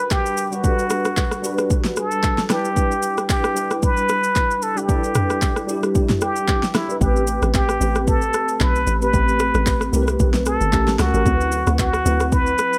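A plunger-muted trumpet leads this soulful, hypnotic amapiano fragment, its breathy jazz-style solo sitting up front with wah-wah colour, light vibrato and scooped notes trailing into analog delay. Beneath it, a worn, slightly out-of-tune tine electric piano plays clean, direct accompaniment, thickened by ensemble chorus and its own delay as the harmony moves from Gmaj7 and Em7/G to Am9, then through A7b9 to D13. The deep house drum kit is electronic and layered, with a deep kick, fat snare, handclaps, rim click, shaker and toms, all tape-warm and prominent, riding a lightly swung sixteenth-note feel. At 7.0 seconds a hollow log drum bass arrives, bouncy and mellow, its FM tone and noise layer giving each fast-attack note a percussive, decaying thump. The mix is dry of reverb yet echo-heavy, and the passage is clearly cut from a longer piece.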